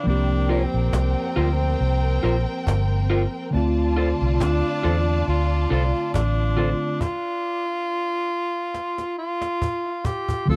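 A slow lovers rock reggae groove at 69 BPM in 4/4 rolls with a light 16th-note swing, set in D minor and tuned a touch below standard pitch. This short, smooth and bittersweet passage is cut from a longer piece. A snappy, saturated cajon with snares and a dark, foam-muted electric bass sit up front, the bass round and amped. A breathy tenor saxophone carries the melody with a whispered, intimate vibrato and soft attack, trailed by tape echo. Alongside it a lush bowed violin section adds a second line, while a worn, slightly out-of-tune tine electric piano comps through its built-in speakers, both touched by slapback echo. Picked stabs from a slightly broken-up, lo-fi electric guitar cut through over C7sus4 and then Dm7 until the band stops at 7.0 seconds, with the cajon playing a fill from 8.7 seconds, all in a dry, close 1970s-style room with light reverb.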